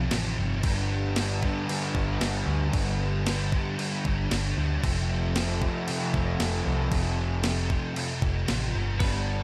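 Shoegaze and dream pop rock at 115 BPM in a straight 4/4, this dreamy, blissful excerpt moves from Fadd9 to G and back to F under light reverb. A thick, up-front fuzz guitar with ensemble chorus and a crunchy overdriven guitar with reverse reverb play riffs over a round, amped picked electric bass. A crisp, thumpy 8-bit drum machine with overdrive drives the crash, kick and snare until 9.1 seconds, and a bright, twangy twelve-string electric guitar adds brief arpeggios through analog chorus and digital delay from 9.0 seconds.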